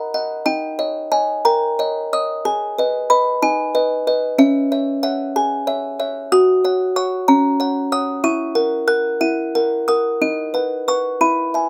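A delicate, tinkling music box plays alone throughout this short, innocent and tender classical lullaby excerpt in a rubato 6/8, its large box sounding full and bright, close-miked, dry and up front as it moves through D#7, G#m, C#m, F# and F#7/E before settling on B/D# at 10.2 seconds.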